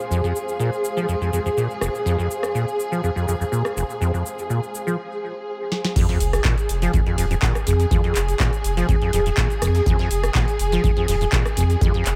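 Echo-heavy and lightly reverberant, this acid house excerpt feels hypnotic and gritty. A squelchy, resonant sawtooth acid bass drives a riff up front, colored by ensemble chorus, 12-bit sampler grit and dub echo. Beneath it, a dark, woody string section holds lush bowed chords with vibrato, shaped by sidechain pumping and a low-pass filter. A booming analog drum machine, re-recorded in a small room with tape coloring, supplies crisp snare, metallic hats, handclaps, rim clicks, shaker and crash, while a bright, blurred granular pad drifts above until a break at 5.0 seconds, with a drum fill just before the drop. At 6.0 seconds a deep electronic kick arrives alongside a very quiet, compressed breakbeat kit with a high-tuned snare, a faint sub drop marks the impact, and a round sine sub bass pumps up front beneath the riff.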